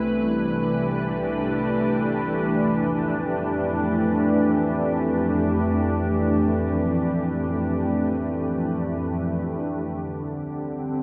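This ambient excerpt drifts in free time with a peaceful, luminous mood, carried entirely by a solo evolving wavetable pad that holds the foreground from start to finish. The pad morphs continuously between triangle and sine tones, underpinned by a sub octave, and spans from C2 up to B4. Its slow attack, sustained body and long release let each chord bloom and linger, while ensemble chorus, built-in reverb and delay lend it a shimmering, layered quality. The harmony opens on Cmaj7, moves to Fmaj7 at 2.5 seconds for the longer second passage, and settles onto an open G5 at 9.5 seconds. A lush hall reverb with a 2.6-second decay bathes the sound, giving the piece a soft, spacious glow.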